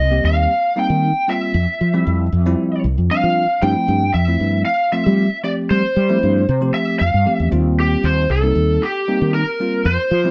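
Bright and soaring, this straight-feel jazz piece at 115 BPM in 4/4 sets a dark, overdriven, lo-fi lead guitar from a small cranked amp carrying the melody between G4 and G5 with plate reverb, over a warm, up-front fretless electric bass bathed in lush chorus and a clean, bell-like tine electric piano with analog chorus and plate reverb that joins at 0.1 seconds, moving through Eb69, Dm11/F and G13sus4 in a lightly reverberant, dark, warm production cut from a longer piece.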